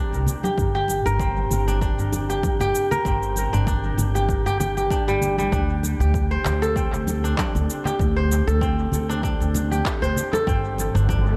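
Organic downtempo with a mystical, swung feel, led by a ringing, crisp fingerpicked kora playing arpeggios up front through dub echo, beside a woody, dark pizzicato upright bass that pumps from sidechain compression. Punchy, overdriven electronic kick drum and layered electronic cabasa and handclaps, the latter also soaked in dub echo, sit with bright acoustic congas in the background, while a breathy, wind-like tuned noise texture hovers very quietly underneath. The echo-heavy mix carries light reverb and small room ambience, and a background riser enters at 10.8 seconds as the excerpt closes.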